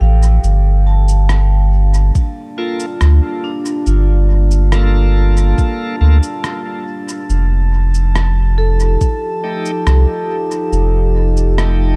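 Ambient dub at 70 BPM in G minor, deep and hazy, cut from a longer piece: a warbling, lo-fi pad with chorus and reverb holds sustained chords over a round sine sub bass up front, while a metallic vibraphone with hard mallets plays arpeggios through sampler grit and dub echo, a muffled, pitched-down shaker and rim click tick in echo, a glassy texture drifts in at 1.7 s, a soft electronic kick sits between 2.2 and 9.2 s, and a shouting, lightly overdriven tonewheel organ on slow rotary speaker adds stabs from 2.6 s, all in an echo-heavy digital ambience moving from Gm7 to F7.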